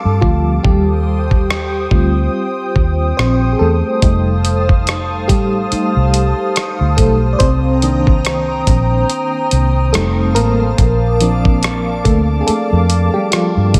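A warbling FM electric piano with tremolo and phaser takes the lead from the first moment, moving through Bbmaj7, Eb6, F7 and Cm7 in this smooth, tender contemporary R&B excerpt in Bb major at a swung 71 BPM. Beneath it, a glassy, ethereal FM pad holds sustained high chords with ensemble chorus and sidechain pumping, while a dark, foam-muted fingered electric bass entering at 0.1 seconds and a gritty, dusty soul sampler-style kit with a thumpy kick, hi-hat and rim click entering at 0.2 seconds sit up front. A moderate plate reverb soaks the mix in a dreamy haze.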